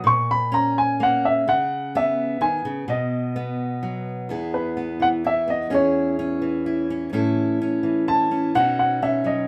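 Peaceful and gentle, this acoustic folk passage for a duo or small band sways in a triple metre with a straight feel, and it is cut from a longer piece. An upright piano with a woody, polished tone carries the melody up front, sitting between B4 and C#6, while a fingerpicked steel-string acoustic guitar supplies the accompaniment lower down, from E2 to A4. The guitar's fresh strings ring with a concert-hall clarity, and finger squeaks add a close, human touch. The opening phrase moves through A#m, C#m7 and B, and at 4.3 seconds the piano takes a solo over a new section that settles onto E before passing through C#m/E and A to close on Badd9. A modest small-room ambience gives the pair an intimate, natural setting.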